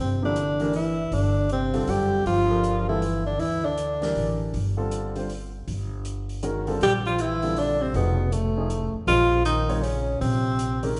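A breathy, close-miked tenor saxophone carries the melody in this cool, hypnotic modal jazz waltz, with a mellow trombone playing a second line beneath it, scooping into notes with vibrato and a soft attack; both horns drop out from 4.4 to 6.8 seconds before returning. A woody, thumpy upright bass sits up front throughout, while a present grand piano comps and a softly mixed, airy drum kit ticks along on hi-hat and snare in a lightly swung triple feel. The sound is distant and reverberant, with the harmony shifting from Gm11 to F7alt before landing on Bbm11 at 9.1 seconds in this fragment cut from a longer piece.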